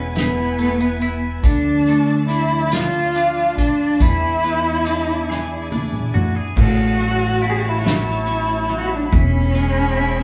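A dark, bowed cello carries the melody from 0.2 seconds, its single player sitting up front with vibrato and a woody tone that still feels a little distant. This short passage from a longer tender, romantic pop ballad moves slowly in a straight six-eight. A bright, twangy twelve-string electric guitar plays clean, picked, compressed accompaniment, while an upright bass plays plucked lines with steel strings. Behind them, a clear, focused studio string section holds sustained bowed chords with vibrato, placed close yet in the background. The drum kit, played with soft mallets, sounds roomy and distant, with dark cymbals, a fat snare and a punchy kick; it leads into a new section at 6.6 seconds with a fill that begins at 5.3 seconds. The band plays live in a small room, wrapped in a moderate stone-room reverb.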